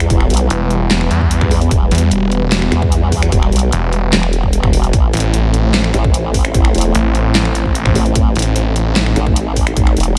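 Chaotic and menacing, this heavy wobble dubstep piece runs at 149 BPM in a half-time 4/4 feel, set in E harmonic minor and shifting from Em to Am at 4.9 seconds. A formant-sweep wobble bass holds the low end throughout, its detuned sawtooth tone wobbling up front with chorus and overdrive. At 0.5 seconds a snarling distorted saw bass joins it, growling and aggressive with a moving notch and heavy distortion, until it stops at 9.1 seconds. Above them, a lush supersaw pad sustains chords with a slow attack, pumping against the sidechain while a phaser and low-pass filter shape its full-bodied sound. The dubstep drum kit brings a huge snare, bright hats, handclaps and finger snaps with a tape-warm edge, and a punchy electronic kick, re-recorded in a large room, anchors the beat. A light reverb surrounds this short cut from a longer piece.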